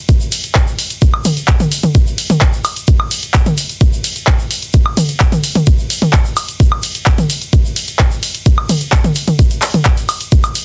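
A thumpy, tape-warm sampler kick carrying a large-room character sits up front in this gritty, hypnotic 129 BPM house excerpt in straight 4/4, alongside a punchy analog drum machine playing handclaps, hi-hat, ride cymbal, toms and woodblock, while a grainy, mellow tube shaker sits close in the background, all captured dry and packed into a dense, heavily limited modern master.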